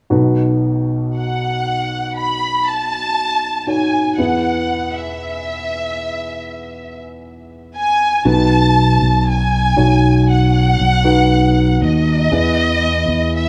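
A lush, vibrato-rich violin section carries the heartfelt, hopeful melody of this slow pop excerpt at 59 BPM, entering at 1.2 seconds over a dark, woody upright piano with audible action noise and long sustain, until a punchy, up-front fretless electric bass joins at 8.3 seconds, all set in a small room with light studio reverb.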